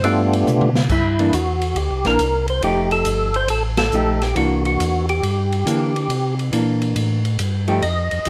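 Soul jazz organ trio with a greasy, swinging mood, where a fat, percussive tonewheel organ with key click and slow rotary speaker carries the melody over a dark, clean hollow-body jazz guitar, a round, mellow second organ supplying the bass, and a dark-cymbaled acoustic drum kit with a boomy kick, opening with a drum fill at 0.5 seconds and hitting a band accent at 3.7 seconds under light reverb, cut from a longer piece.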